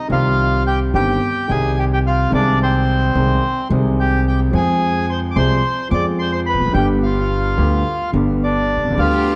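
A dark production on a moderately reverberant scoring stage, with a 1.6-second decay, gives this short tango fragment, cut from a longer piece, a dramatic and passionate air. The bandoneon carries the melody up front with a reedy, vintage, band-limited tone, moving over a rubato feel at 108 BPM in 4/4 and C harmonic minor, tuned to A4 = 439 Hz. A concert grand piano, also up front, accompanies with a boxy character, deep bass and long sustain, while a woody, thumpy upright bass with steel strings plays pizzicato underneath. The harmony passes from Cm through Ab/C and Fm to G. At 9.0 seconds a clear, smooth symphonic string section adds bowed stabs with light vibrato, sitting lower in the mix than the other three parts.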